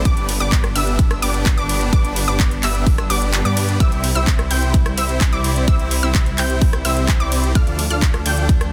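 The sound is dense and heavily limited, with a dry presence and a punchy, tape-warm electronic kick up front. This uplifting, euphoric festival progressive house excerpt runs at 128 BPM in a straight 4/4 in C major, moving through G, C and Dm. A huge, thick detuned supersaw carries the riff, while a lush unison pluck plays sawtooth arpeggios high above with a filter sweep and ring modulation; both pump with the sidechain and trail a digital delay. Underneath, a menacing, beating detuned saw bass adds tube saturation and pumping. A clear studio string section holds soft, floating sustained chords in the background. The big-room dance kit layers handclaps, metallic hi-hats, ride cymbal and rim clicks around the kick, which drops out briefly from 3.3 to 3.8 seconds before the change to C.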